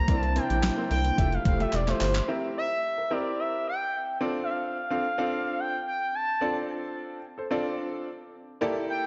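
Late-night and danceable, this early-eighties boogie funk fragment, cut from a longer piece, moves at 109 BPM in a straight 4/4. A smooth, expressive sawtooth lead carries the melody up front throughout, its portamento glides and vibrato softened by chorus and analog delay, and it stands out as a solo over the opening 2.3 seconds. Beneath it, a rubbery, hollow square bass bounces with a nasal filter pluck, while a crisp, overdriven 8-bit drum machine drives handclaps, hi-hat, a thumpy kick and a medium-tuned snare, ending with a fill that stops at 2.3 seconds. A shimmering, retro pulse-width pad sits in the background for that opening stretch, joined by a very quiet, slightly broken-up electric guitar riff. A clear concert grand piano with deep bass accompanies from the start to the end, and once the rhythm parts drop out after 2.3 seconds it is piano and lead alone over chords moving from C9 and Fmaj9 to C7 and F6. 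The whole mix is dreamy and soaked in plate reverb, its highs gently rolled off for a hazy, nocturnal glow.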